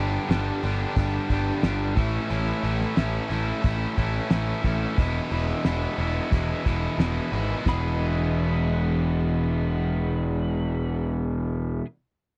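A straight, driving 4/4 classic rock groove rides on a cloth-damped, thuddy drum kit with a fat snare and dark cymbals from 0.3 to 7.8 seconds, under a punchy fuzz bass and two bright overdriven guitars, one of them a hollow-bodied semi-hollow, riffing confidently over G, A and E, and a twangy clean lap steel slides in quietly in the background at 7.7 seconds, all captured in a dry, close 1970s-style studio sound.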